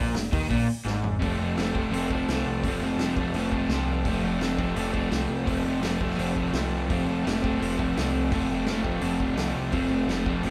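A crunchy, double-tracked overdriven guitar riff sits up front in this rowdy, raw garage rock excerpt at 169 BPM in F major, backed by a growling overdriven picked bass and a punchy vintage acoustic drum kit with a rolled-off top, all playing live in a small room, with a drum fill at 0.9 seconds leading the band out of an Fmadd11 opening into an F-chord section from 1.2 seconds.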